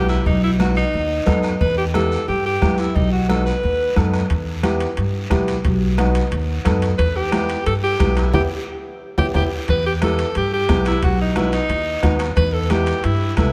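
Fiery and danceable, this cumbia moves at a brisk 178 BPM in E harmonic minor, a short section cut from a longer piece. A bright alto saxophone carries the melody up front with light vibrato and a present, pop-style solo voice, pausing after 4.1 seconds and returning at 7.0 seconds. Beneath it, a woody upright piano with long sustain supplies accompaniment, while a pizzicato upright bass with steel strings sits forward in the mix, its tone warm and woody. The percussion includes a distant bombo struck with a soft beater, a raspy guiro set far back in a large room, damped high-tuned congas with a thick-skinned sound in the background, and ringing metal-shell timbales entering at 4.3 seconds, close and dry. The harmony swings between B7 and Em. A band accent from 8.3 seconds, joined by a drum fill at 8.7 seconds, leads into a repeat of the opening section at 9.7 seconds. Everything is heard from further back in a room with moderate plate reverb.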